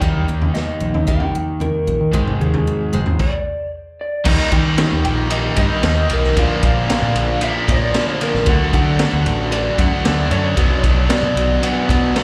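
A raw garage drum kit sits up front, its high-tuned snare and punchy kick sounding gritty in a small, pumping room, driving this bittersweet, anthemic slice of quiet-loud alternative rock in a straight four. A growling fingered bass, direct and amped with overdrive, sits at the same level as the drums, while a double-tracked, compressed overdriven electric guitar plays a riff with slapback echo. Over them, a dark, lo-fi electric guitar through a small old amp carries the melody, slightly broken-up and trailed by slapback and tape echo. A full-bodied steel-string dreadnought picks bright arpeggios until a brief stop at 3.2 seconds. At 4.2 seconds a second double-tracked, overdriven guitar enters with its own riff, and the whole excerpt comes across as a live gig heard through the venue's PA in reverberant club air.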